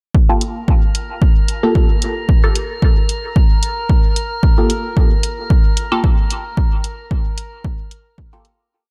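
Muted, nasal dub chord stabs with a resonant filter pluck punctuate this nocturnal dub techno piece, their sparse, echoing hits moving one chord shape in parallel through a phaser and sidechain pumping. Up front, a dry, punchy electronic kick holds a four-on-the-floor pulse beside programmed closed hi-hats and backbeat, while a calm, glassy sine texture of drifting overtones sustains a bright high note under chorus, its own reverb and sidechain pumping. The hypnotic groove sits in a dark, digital ambience and fades out from 5.9 seconds.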